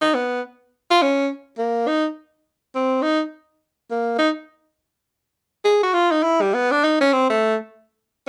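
A bright, punchy tenor saxophone plays alone in free time from 0.0 to 7.6 s, its forceful, vibrato-laden jazz line sitting up front in a brief, smoky and swinging fragment of a longer piece, framed by moderate studio reverb and a dark production.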